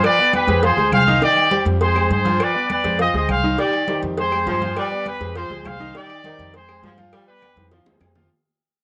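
A bright, punchy trumpet section leads from the first second of this fiery, passionate salsa fragment, carrying the melody up front with a light vibrato and a vintage, cassette-tinged tone. Beneath it, a brilliant concert grand piano supplies the accompaniment over a progression that circles through Fm, Cm and G7, while a thumpy, gut-strung upright bass joins at 0.5 seconds with dark pizzicato notes. The percussion sits in the background at a driving 203 BPM: ringing congas, tight high-tuned bongos with cowbell, metal-shelled timbales and agogo bells heard from a distance, and very quiet woody claves. At 3.6 seconds a smooth saxophone section enters with a second line in its low register, adding ensemble body under the trumpets. The home cassette recording has a moderate booth ambience, the whole passage plays as a fade-out, and a drum fill arrives at 7.4 seconds.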